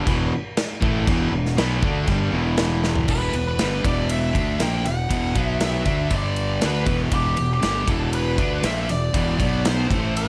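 Set in a studio reverb, this heavy, menacing hard rock excerpt puts a punchy, up-front acoustic drum kit (crash, ride, snare, kick and toms, with a fill at 2.8 seconds) and a growly fuzz fingered bass beneath bright background riffs from a crunchy overdriven guitar, a high-gain distorted guitar and a double-tracked overdriven guitar that drops out at 3.1 seconds, as a dark, biting lead guitar takes the melody over a churn of minor and power chords.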